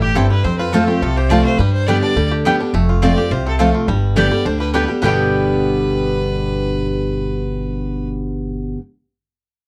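A straight 4/4 pulse drives this lively, virtuosic bluegrass fragment at 210 BPM in G mixolydian, moving between F and G chords. A twangy, percussive fingerpicked banjo and a distant, earthy bowed fiddle carry the melody, while a full-bodied dreadnought guitar sits up front with picked accompaniment, a woody pizzicato upright bass on gut strings thumps below, and a bright double-strung mandolin adds stabs from 0.2 s. The sound is a dry, close 1970s-style studio take with light reverb, cut from a longer piece.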